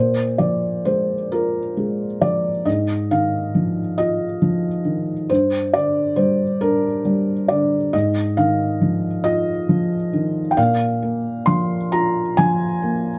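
A felt-muted upright piano plays alone, up front and dark, its thick felt and audible action noise carrying this intimate, melancholic neoclassical minimalist fragment in a rubato 6/8 through a small, moderately reverberant room, with chords moving from Bb5 to Fm7/Ab and Gmadd11 before returning to Bb5 at 10.6 seconds.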